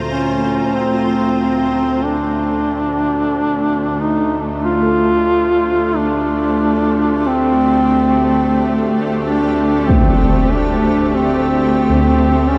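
This dark ambient drone in D minor moves at a slow 46 BPM, ominous and desolate, and is cut from a longer piece. Up front, a tense, string-like bowed drone with a sawtooth edge, vibrato and ring modulation holds the low register, while a mellow duduk sings a folk-style solo melody with scooped notes, vibrato and a smooth top, trailed by delay. Behind them, a cloudy, evolving granular pad sustains blurred, full-bodied chords, shifting from Bbsus2 to Dm7 at 2.1 seconds and fading in from there. Gamelan-type bossed gongs play metallic, bronze arpeggios with a beating shimmer in the background. A breathy, wind-like tuned noise texture creeps in, barely audible, at 6.6 seconds, and a huge, bright impact with a low-pass filter lands at 9.9 seconds. The whole is bathed in a vast, wet reverb with a 7.2-second tail.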